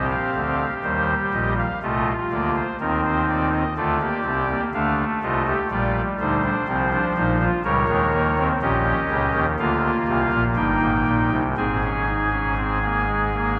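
A long cathedral reverb, decaying over 4.4 seconds, surrounds a single pipe organ voiced with a soft reed oboe stop that sits up front, its tone shaded by a tremulant and a baroque voicing. This classical, baroque-style four-part fugue moves at 61 BPM in a straight 4/4, and its mood is serious and driving. The solo organ spans a range from G1 up to Ab5 across the 13.6 seconds of this fragment, which is cut from a longer piece. The harmony opens on C minor, passes through D minor and B-flat, and settles into A-flat major from 7.7 seconds. The closing bars move through E-flat over G to land on A-flat at 11.6 seconds.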